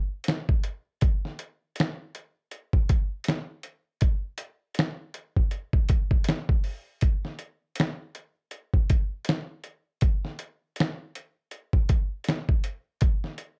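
Nostalgic and hazy, this short hip hop passage is cut from a longer piece and moves at an unhurried 80 BPM in 4/4, with a 57% swing on the sixteenths giving it a loose, laid-back sway. A dusty, sampler-style soul drum kit carries the whole track, coming in at 0.2 seconds and running through to 13.6 seconds. Finger snaps and hi-hat sit over a thumpy kick and a fat snare, and the compressed, overdriven kit has a gritty edge, as if re-recorded in a small room. The drums sit up front in a dark production with little reverb, keeping the sound close and dry.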